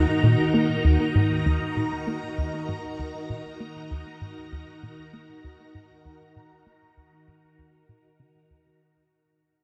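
A phased string machine holds swirling, bright, vintage chords in Eb minor over a plucky, mellow analog bass riff with subtle chorus and delay, setting a mysterious, hypnotic 98 BPM pulse for this fading, sequencer-driven space music fragment of 8.8 seconds, bathed in a huge ambient reverb within a dark, warm production.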